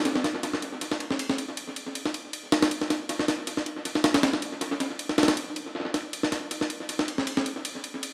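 A gritty, pitched-up breakbeat drum kit sits up front, its high-tuned snare and ride cymbal sounding compressed and sampler-style, with analog delay trailing the hits. This raw, atmospheric drum and bass fragment, cut from a longer piece, runs in 4/4 with a light swing on the sixteenths. The drums play from 0.1 to 8.1 seconds inside a soaked echo-chamber reverb that gives the mix a cavernous, echo-heavy haze.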